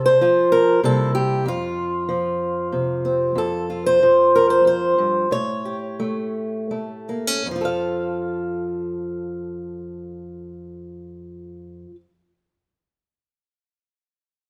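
A bright, up-front fingerpicked acoustic archtop guitar plays alone in this short, hopeful folk fragment, moving freely in a lilting three-beat rubato across a span from low F2 to high F5. Its harmony drifts from Csus4 and C7 toward F, and the playing slows noticeably between 3.4 and 7.5 seconds, touching an A7 before settling on F at 7.5 seconds. Captured live in a single room with light reverb, it has an intimate, gently glowing sound.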